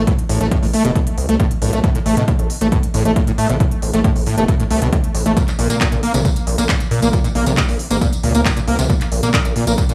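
A straight 4/4 pulse at 136 BPM drives this industrial peak-time techno, where a punchy, up-front electronic kick and a layered kit of handclaps, smooth hi-hat and tambourine sit in studio reverb alongside a gritty, nasal, oscillator-synced synth bass with distortion and sidechain pumping, and a squelchy, resonant, screaming acid riff with filter sweeps, distortion, chorus, analog delay and pumping, over A minor until the harmony drops away at 5.4 seconds, in a dry hardware sound with small-room ambience.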